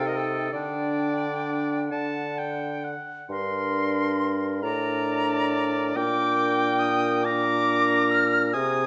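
Classical slow romantic movement for wind quintet in G minor, a solemn, elegiac fragment in 6/8 with free rubato at roughly 42-49 BPM on the dotted quarter, with harmony drifting from Cm6 and G5/D toward Gm by 3.3 seconds. An airy, close-miked concert flute carries the expressive melody with vibrato and a soft attack, while a bright oboe sings a second line up front with light vibrato. Beneath them a clear clarinet and a dark, smooth-topped French horn supply accompaniment, and a mellow bassoon anchors the bass, all set in a moderate recital hall reverb.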